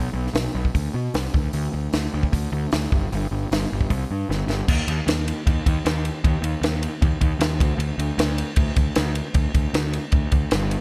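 A fuzzed, overdriven electric bass opens this bittersweet, moody indie rock excerpt with a direct, amped tone, and a compact cocktail drum kit joins at 0.3 seconds, both parts sitting up front in light reverb. The acoustic kit is dry, with dark crash and ride cymbals, hi-hat, a high-tuned snare and a punchy kick. A drum fill at 4.3 seconds carries the music into a second section at 4.7 seconds, which runs until the cut.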